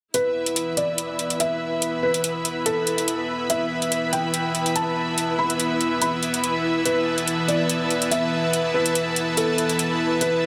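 Heavy wobble dubstep at 143 BPM in 4/4, half-time with a light 16th-note swing, this menacing, heavy excerpt runs from 0.1 s to 10.5 s, built on a lush, detuned supersaw pad with a sub octave, slow attack and airy noise layer holding sustained chords up front, while metallic, tape-tinged electronic hi-hats sit forward in the mix. A felt-muted upright piano carries the melody, soft and intimate with audible action noise and a digital delay, as a bright, bowed studio string section with vibrato adds an intense ensemble texture. Moderate small-room reverb gives the whole a close ambience.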